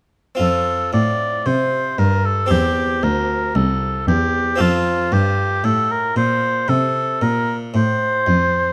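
At 0.4 s a smooth-topped oboe with light vibrato sings a serene, flowing melody up front, over a dark, woody bowed cello bass and an airy, plucked harpsichord sitting slightly lower, in this brief baroque-style sonata excerpt in F major at a slow 57 BPM, moving from F to C and back to F under light reverb and close, detailed miking.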